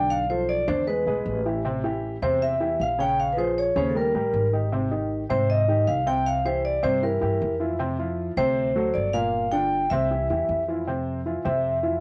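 A ringing vibraphone, struck with medium hard mallets and its motor off, carries the melody from the very first moment, joined at once by a warm upright piano and a plucked upright bass in this lively, sophisticated slice of Afro-Cuban jazz in a straight 4/4. The vibraphone sits up front with a metallic yet smooth tone, and the woody piano shares that close placement as it comps through shifting harmonies such as Bm7b5, Abmaj7, C7 and Gm7. Beneath them, the steel-strung bass plays pizzicato with a growly, thumpy, dark character, roughened by transformer saturation, while the vibraphone and piano both carry a cassette tape coloring. At 10.9 seconds the passage turns to a fresh section where the vibraphone takes a brief solo over an F5 chord before the cut ends at 12.0 seconds. The whole has the intimate feel of a home recording on cassette, touched by light reverb.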